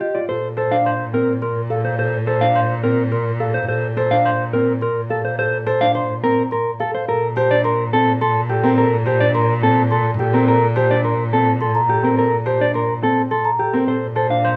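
A mellow, clean electric guitar carries the melody up front in this bright, hypnotic fragment of minimalist classical pattern music in 3/4, over arpeggios from a clear grand piano and a bell-like, sweet, ringing celesta, while a dark bowed cello, played by one player with expressive vibrato and portamento, holds a low Bb2 bass from 0.3 s, the ensemble heard from further back in a large, wet studio reverb.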